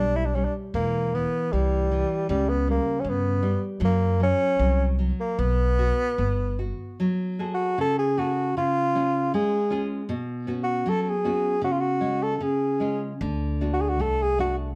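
A mournful, longing fado-style ballad cut from a longer piece, with a loose rubato feel and a dark, warm production touched by light reverb. A mellow bassoon sings the solo melody up front with classical vibrato, over a full-bodied, fingerpicked nylon-string guitar in a deep classical style. A woody, growly pizzicato upright bass anchors the opening, falls silent at 6.7 s as the harmony moves at 7.0 s, and returns at 13.2 s for the close.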